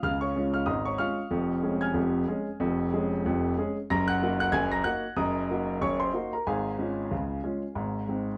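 A clear, intimate grand piano opens this lively, jaunty ragtime fragment, playing alone in a bouncing 2/4 with a gentle swing, its range stretching from deep bass to bright upper treble. The instrument sits up front with audible action noise and a natural tone, framed by light reverb and a dark production. Cut from a longer piece, the passage moves through a short chord progression before breaking off at 8.4 seconds.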